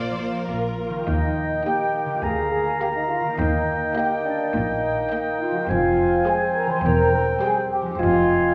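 This cinematic passage, quirky and magical in mood, opens at 0.0 s with a bowed string orchestra and a concert harp. A very quiet violin section carries the melody with soft attacks, vibrato and expressive portamento, while a focused second violin section and a warm viola section fill in the harmony. Beneath them, a clear cello section sits in the background beside a rich, close double bass section, and the harp's fingerpicked arpeggios ring out across its range. At 1.1 s the woodwinds and brass join: an oboe with light vibrato, a pure flute section with rolled-off highs, a softly attacked clarinet, and a bassoon in the accompaniment, all over distant, roomy French horn chords with a mellow tone. The whole ensemble sits in the generous reverb of a recital hall, and the passage, cut from a longer piece, ends at 8.5 s.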